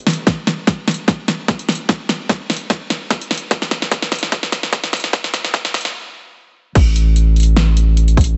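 A deep, saturated sine sub bass with sidechain pumping anchors this lush, bittersweet future bass cut, joined by an up-front pop drum kit of fat snare, hi-hat and crash plus a hard-clipped, overdriven electronic kick in a swung half-time feel, as a build-up of drum fill and filter sweep breaks into a stop at 5.9 seconds before the drop lands at 6.8 seconds.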